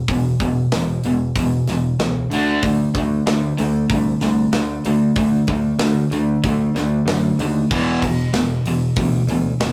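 A rough rehearsal-room recording with moderate studio ambience carries this aggressive, heavy hard rock fragment at 95 BPM in a straight 4/4, where an overdriven cranked stack guitar and a compressed, distorted electric guitar play bright picked riffs over E5, moving to D5 at 2.3 seconds and back to E5 at 7.7 seconds, backed by a growly, punchy picked electric bass and a tight metal drum kit with a mid-forward sound, a medium-tuned snare, a snug kick, hi-hat and crash cymbals.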